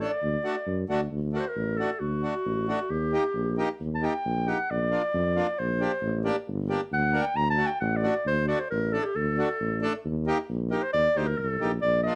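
A mellow, classical-style clarinet with slapback echo, a reedy accordion and a smooth-topped tuba bass all sound up front from the start of this soulful, festive klezmer fragment in 2/4, set in a moderate studio reverb, with the clarinet stepping out for a solo from 1.1 to 8.3 seconds over a D, Eb, Bb and Gm progression.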